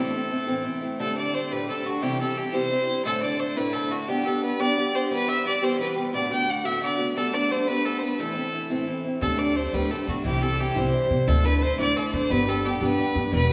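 A steady 6/8 jig pulse drives this short cut from a longer Celtic folk tune, its mood dark yet lively and full of forward momentum. A single bowed fiddle carries the melody up front, its tone biting and nasal with a light vibrato and an earthy edge. Beneath it, a picked acoustic archtop guitar plays accompaniment from the start, shadowy in color, with audible finger squeaks on the strings. At 9.2 seconds, as the opening strain begins again, a pizzicato upright bass joins with a woody, thumpy steel-string sound that deepens the low end. The harmony moves through chords such as Am, Dsus4, C and G, with colorings like D6 and Gadd9. Everything sits close to the listener, wrapped in a lush, reverberant hall that lends the small group a spacious, resonant glow.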